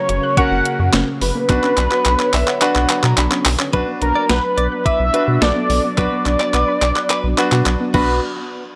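A bold, retro octave-doubled lead with chorus carries the melody in this cool, driving synth-pop piece at 107 BPM in B harmonic minor, over a rubbery square bass, a thumpy, overdriven 12-bit digital drum machine with fills, a bright concert grand piano, a silky string machine with phaser and ensemble chorus, and a soft round pluck playing arpeggios through analog delay in the background, while a clean, direct-recorded electric guitar joins at 3.7 s, the whole sitting in a moderate plate reverb.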